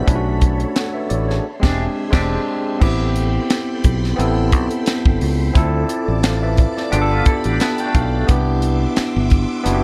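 Lush 1970s-style soul at 88 BPM with a lightly swung sixteenth feel, bittersweet and silky, built on a tight funk drum kit with bright cymbals and a high-tuned snare, a growly fingered electric bass, a barky overdriven tine electric piano that adds a fill at 7.3 seconds, and a swirling phased string machine holding sustained chords, while a twangy, slightly broken-up electric guitar through a small old amp with tremolo plays a short riff at 1.6 and 6.9 seconds, set in dark studio reverb over Bm9 and E7alt moving into Am9, Dm7, G7 and Cmaj9.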